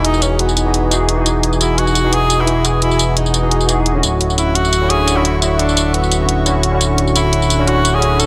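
A light reverb and digital ambience give this lush, uplifting liquid drum and bass cut from a longer piece an airy sheen, moving at 173 BPM in 4/4 with a gentle 54% swing on the 16ths. Up front, layered electronic hi-hat and tambourine drive the groove, while a smooth sawtooth-and-triangle synth bass, wave-folded with vibrato and portamento, glides low between D1 and E1. A barky tine electric piano, lightly overdriven through a combo amp with analog chorus and a low-pass filter, carries the accompaniment over chords moving from Emaj9 to Dmaj9 at 4.0 seconds. Behind it, a thick, detuned unison pad with a sub octave, slow attack and long release sustains chords high in the background, shimmering through chorus and phaser. A punchy tenor saxophone takes the solo melody in a classical style, its vibrato trailing into tape echo, as a barely audible downlifter sinks beneath the opening until 1.4 seconds.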